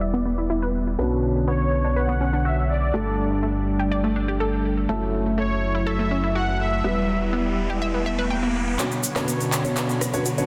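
A deep, round analog bass sits up front through this bittersweet, driving progressive house excerpt, beneath a smooth chorused pad, a detuned, warbling pluck arpeggio with vintage 12-bit grit and delay, dark, boxy grand piano stabs behind a low-pass filter, and a soft supersaw melody with delay that stops at 7.5 seconds. Filter sweeps shape the pluck and pad while a background riser enters at 6.5 seconds, building toward the change at 8.8 seconds. There an overdriven big-room drum kit with crisp hats, handclaps and rim clicks arrives up front alongside a grainy egg shaker, as a filter sweep moves over the piano.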